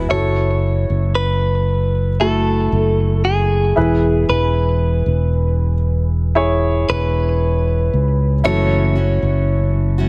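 A dry, close-sounding pop excerpt at a slow 58 BPM in 4/4 carries a heartfelt, hopeful mood as a clean, compressed electric guitar picks the up-front melody over a clear, polished baby grand piano, a punchy fingered electric bass sits forward in the mix, and a full-bodied jumbo steel-string acoustic guitar with audible finger squeak returns with picked arpeggios at 8.4 seconds as the chords move from F#m7 to E and back to F#m7.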